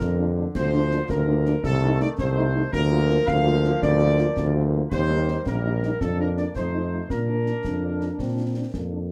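A festive, proud military-style march for wind band in 6/8 at 110 BPM in Bb major, this brief cut from a longer piece has a dark, punchy trumpet section carrying the melody over a mellow woodwind second line, soft-attack trombone chords, a loose French horn accompaniment in the background and an up-front tuba bass. Concert snare, bass drum and clash cymbals with dark cymbals keep the march going, while a smooth-topped euphonium adds its own second line from 7.6 seconds. The harmony moves from Bb through Eb and an F7 back home to Bb, captured with close, detailed microphones in a moderate booth ambience.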